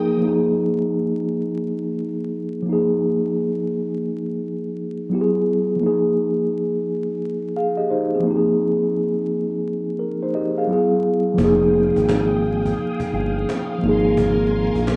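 A mellow tine electric piano, up front with a cassette-tape haze, opens this melancholic, hazy lo-fi hip hop excerpt alongside a brief touch of phased, chorused string-machine violas, then carries the swung Fm7 and Gbsus2 changes alone until, at 11.4 seconds, the vintage strings return over a smooth sawtooth synth bass and a snappy, distant cajon, the whole rough home-demo mix sitting under vinyl crackle.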